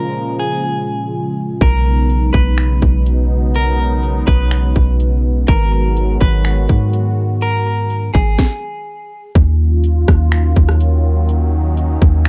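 Spacious and hazy, this atmospheric cloud-rap excerpt in Eb minor moves at 124 BPM with a half-time feel, opening on a detuned, warbling sawtooth pad with subtle chorus and sidechain pumping beneath a dark, picked clean electric guitar melody colored by harmonic tremolo, low-pass filtering and analog delay, before a round, sine-like 808-style bass and an overdriven trap kit of hard-clipped kick, sharp snare, metallic hats, finger snaps and rim clicks arrive up front at 1.6 seconds, all in a dry, echo-heavy mix that halts briefly at 8.4 seconds and moves from Abm9 to Ebm9 as the guitar stops at 9.3 seconds.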